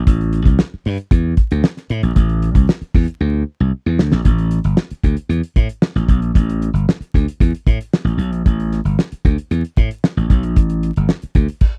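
The recording sounds dry and close, like a 1970s studio session, with a layer of vinyl crackle over the top. This is a cool, hypnotic funk groove at 114 BPM in a straight 4/4, cut from a longer piece and tuned to A4 = 441 Hz. A growly, punchy electric slap bass sits up front in a bright, direct amped tone, ranging from G1 to A2. Beside it, a damped acoustic drum kit of kick, snare, hi-hat and crash is dark and smooth, with a fat snare, a tight kick and a rolled-off top end. A drum fill from 3.2 to 4.2 seconds carries the groove into a new section that runs to the end.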